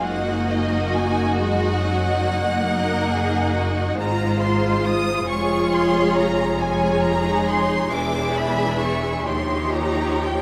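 Drenched in a cathedral reverb with a 5.2 s decay, this short passage from a slow, romantic movement for string orchestra feels lyrical and tender, moving at 46 BPM in a rubato 12/8 and tuned to A4 = 437 Hz. A focused first violin section carries the melody high above a lush, up-front second violin line, while distant violas supply the accompaniment and even cellos sit in the background beside smooth-topped double basses. Every section is bowed with vibrato across the full 10.4 seconds, as the harmony passes from Ab7/Gb to Db/F, then E7 and Eb9.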